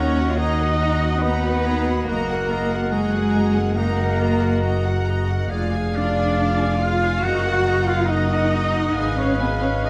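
A classical passage, cut from a longer piece, that moves in a melancholic, solemn mood with a rubato feel in 4/4. A clear, smooth violin section carries the melody with vibrato, while a lush, distant second violin section, a pure-toned flute with a soft attack, a roomy oboe and a very quiet, dark clarinet weave second lines around it. A rich viola section supplies accompaniment, mellow French horns hold sustained chords, and a punchy trumpet adds stabs from the background. At the bottom, an intense double bass section sits up front alongside a focused cello section. The harmony stays shadowed and minor, passing through diminished and half-diminished chords. All of it sits in a wet concert hall reverb, and the production leans dark.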